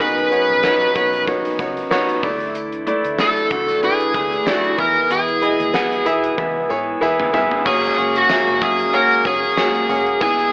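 1980s-style pop at 94 BPM with a light sixteenth-note swing in F# mixolydian, nostalgic and romantic, cut from a longer piece and heard through an AM-radio filter with faint mains hum and a wet studio reverb. A smooth, bright overdriven lead guitar carries the melody up front beside a clear, polished baby grand piano, while a shimmering, retro pulse-width pad with chorus holds sustained chords and a dark, round, foam-muted fingered bass sits in the background. A gated 80s kit with a fat snare, punchy kick and bright cymbals drives the groove, a jingly tambourine enters at 0.3 s, and a drum fill from 6.4 s leads into the F#add9 section at 7.7 s.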